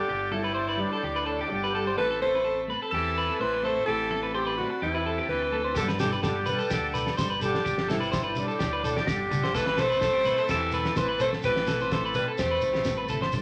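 A straight 4/4 pulse at 127 BPM drives this danceable highlife guitar band passage, cut from a longer piece and moving between Gsus2 and Amadd9 chords. From the start, a clear, close-miked alto saxophone carries the jazz-style melody up front with vibrato, while a breathy, raspy tenor saxophone plays a lower second line in the background. A twangy, slightly broken-up electric guitar picks bright arpeggios, a compressed clean guitar with tremolo adds dark picked accompaniment, and a tonewheel organ holds smooth sustained chords through chorus vibrato and a slow rotary speaker. A round, fingered electric bass anchors the low end. At 5.8 seconds a damped 70s drum kit with a fat snare and tight kick joins, alongside soft-handed congas and a grainy shekere. A moderate large studio reverb gives the band a warm sense of space.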